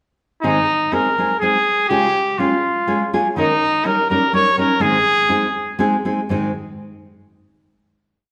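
A moderate recital-hall reverb gives this short, complete Mexican folk piece a roomy, open sound, with a lingering final chord that rings out from 6.3 seconds. The mood is proud and festive, set in a triple metre with a straight feel. A bright, classical-style trumpet carries the solo melody up front, building its period phrases from a compact motif, and its tone sounds slightly distant within the hall. Beneath it, an acoustic nylon-string guitar supplies accompaniment in open chord shapes, mixing fingerpicking with chop strumming and a deep classical character, with audible finger squeaks adding intimacy. The harmony moves from Ab to Db and through Eb7sus4 and Eb7 before settling home on Ab; the trumpet falls silent at 5.8 seconds while the guitar carries on until 6.5 seconds.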